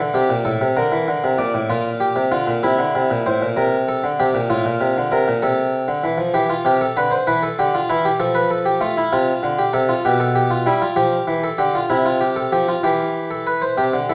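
In a straight 12/8 metre at 64 dotted-quarter beats per minute, this serious, contemplative baroque-style two-part invention, cut from a longer piece, features a solo French-style harpsichord on a single set of strings, its plucked, round tone sitting up front in a reverberant recital hall as the harmony moves from Gm7 through C7 and F/A toward C, G7/B and back to C over about 14.1 seconds.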